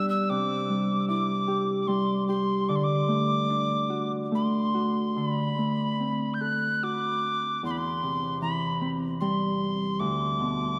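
A wooden whistle carries the melody high in its register, its pure, woody tone marked by a crisp chiff at each attack and an unsteady vibrato that sits up front. Beneath it, a thumb-plucked Celtic harp rings out a warm accompaniment, moving through chords from C and D to D7, C/E and a rootless G/D. This wistful, nostalgic Celtic slow air in D mixolydian drifts in a rubato 3/4 around 75 BPM, and the whole excerpt is bathed in the long, echoing reverb of a vast cathedral.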